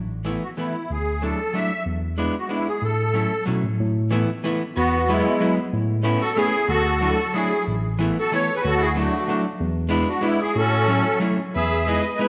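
The musette accordion carries the melody up front, its reedy, shimmering musette tuning giving this nostalgic, charming musette waltz its airy character. Set in A major at 186 BPM in 3/4 with a rubato feel, this brief excerpt from a longer piece states its opening phrase twice over chords such as Asus2, Dadd9, E7 and A6, landing on Emaj7. Beneath it, an overdriven tine electric piano played through a combo amp takes the bass line, barky and gritty in its low register. A dark, clean, hollow-body archtop guitar, picked and up front, fills in the accompaniment. From 4.8 seconds a single violin joins with an intimate, close second line, bowed sul tasto with light vibrato and a soft attack. A recital hall reverb with a long 1.8-second tail surrounds the ensemble.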